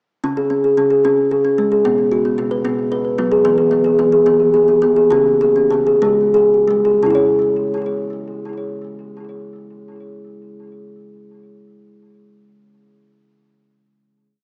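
A solo kalimba, woody and bright with a hollow-box ring, opens this short meditative, hypnotic world piece in a straight 6/8 with a repeating ostinato over a dotted bass figure, its close, up-front tone colored by cassette tape and tape echo and set in a wet spring reverb and small room for a lo-fi home-recorded, small-speaker feel, slowing from 3.4 seconds before settling on a final C#m chord at 7.0 seconds.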